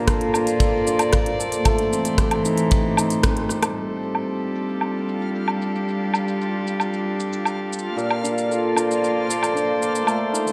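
Folktronica with an intimate, autumnal mood, cut from a longer piece, in a steady straight four. An upfront hammered dulcimer spins shimmering arpeggios through a digital delay, while a dark string quartet, one player per line, holds bowed chords with a nasal, gut-string tone and light vibrato, moving from Bbmaj7 to Am7b5 to G5 and back to Bbmaj7. A punchy acoustic kick in a bright stone room drives the opening until it drops out at 3.3 seconds, just after a band accent. An overdriven organic electronic kit of hi-hat, rim click, shaker and woodblock runs throughout, with crisp, low-pass-filtered hats, and after a drum fill at 3.5 seconds a filter sweep plays across the drums. A reversed, detuned, granular texture swells in softly at 4.8 seconds, dreamy and sustained, all set in a dark production with a moderate plate reverb.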